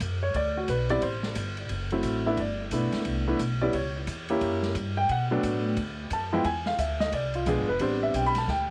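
A small room with a moderate reverb and vinyl crackle frames this playful, sophisticated jazz piano trio excerpt in E minor, swinging at 177 BPM in 4/4. A clear, up-front concert grand carries the melody with short sustain and a touch of tape echo from 0.2 seconds, while a woody pizzicato upright bass with steel strings anchors the low end. An airy, open drum kit with dark cymbals, a medium-tuned snare and a boomy kick, roughened by vintage 12-bit sampler grit, drives the changes through chords like G69, F#7b9 and E7b9.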